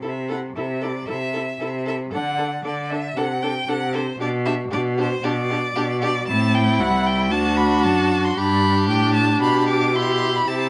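A clear, focused first violin sings the bowed melody up front with vibrato in this lively, spirited classical-period string quartet movement in G major at 115 BPM with rubato, while a warm, smooth second violin carries an even second line, a rich viola supplies accompaniment, and a focused cello anchors the bass up front, all within the moderate ambience of a stone room across this 10.7-second passage cut from a longer piece.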